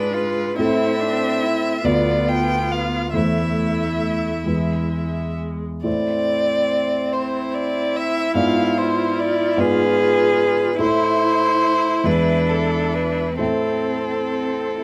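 This is a slow romantic classical movement for piano quartet in A minor, elegiac and yearning, moving in a rubato 6/8 at about 42-50 dotted-quarter beats per minute. Up front and close, a single bowed violin carries the melody between A4 and G5 with smooth, even vibrato. Beneath it a rich cello sings a second line with its own vibrato, while a focused viola adds bowed accompaniment in the middle voices. The concert grand piano underpins the ensemble with a deep bass reaching down to D2, its tone also sitting forward in the mix. The harmony circles around A minor, leaning on G#dim7 and E chords, and a light reverb surrounds the players throughout this 14.8-second passage taken from a longer work.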